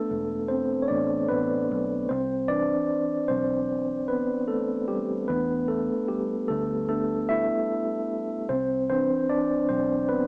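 Cosy and mellow, this short lo-fi hip hop excerpt drifts along at 75 BPM in 4/4 with a lazy swing on the sixteenths, settled in C major. A mellow tine electric piano sits up front and carries the whole passage as its solo voice, its clean, warm tone coming through built-in speakers. Beneath it, a vintage muted fingered electric bass enters at 0.1 seconds, dark and round with a foam-muted, amped character, sitting far lower in the mix than the keys. The harmony rocks between E7sus4 and Cmaj7, arriving on Cmaj7 at 2.1 seconds before circling back. A wet studio reverb with a short tail and a small-speaker coloration give the recording a hazy, intimate feel, as though heard from a bedside radio.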